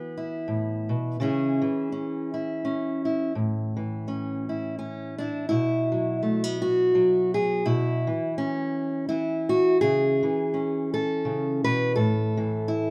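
A fingerpicked steel-string acoustic guitar plays alone in this reflective, wistful folk piece cut from a longer work, its dark, woody, boxy tone of old strings sitting up front in a studio reverb as it moves in a lightly swung 3/4 through E5, C#m and A before a second passage from 5.5 seconds that turns to B5 and E5/B and closes on A5 at 12.0 seconds.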